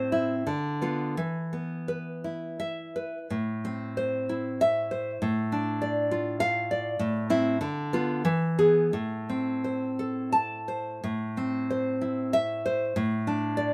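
In a rubato 3/4 that drifts between 82 and 103 BPM, this romantic piece for solo classical guitar unfolds in A minor with an intimate, wistful mood. The nylon-string guitar is the only voice, fingerpicked across a range from A2 to A5 and placed up front, with audible finger squeak giving the playing a close, human presence. The harmony moves through Bdim/D and E5 before settling on Am, then passes through Dm/A, Am, Bdim/D and E, returning to Am at 8.9 seconds. The opening phrase begins again at 11.0 seconds, and a D5/A chord arrives at 13.0 seconds as this fragment, cut from a longer piece, breaks off. Light reverb lends the acoustic tone a gentle sense of space around the strings.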